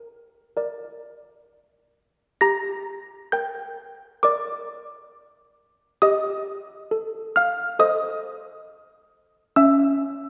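Classical handbell music, solemn and wintry, in a short passage cut from a longer piece, with malleted handbells playing alone throughout and ranging from C#4 to Bb6. The bells sound mellow and damped, their short notes struck with soft clappers, as the harmony moves from G minor toward darker diminished and C-sharp minor colours. A wet scoring-stage reverb places the listener further back in the room, giving each tone a lingering halo.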